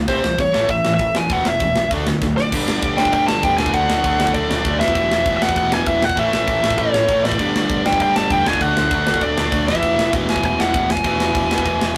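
Upbeat and rebellious, this punk rock passage cut from a longer piece drives forward on a bright, overdriven cranked stack guitar riff, alongside a very quiet distorted electric guitar, over a growling picked bass sitting in the background and a tight metal drum kit up front with a punchy kick, medium-tuned snare and bright cymbals. A dark, smooth lead guitar carries the melody high and prominent, and after a drum fill at 2.2 seconds a faint, double-tracked overdriven guitar joins the riff at 2.5 seconds. The whole thing has the rough feel of a rehearsal-room recording with light reverb.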